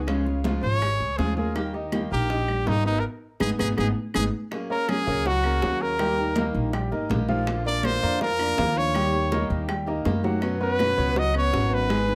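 In a snug small room, this danceable, warm cut of Cuban son and guajira sets a brilliant, punchy, close-miked trumpet up front over a thumpy, woody upright bass, clear piano arpeggios, dark picked steel-string acoustic guitar, and background congas, high-tuned bongos and saturated claves, with a band accent hitting from 3.0 to 4.5 seconds.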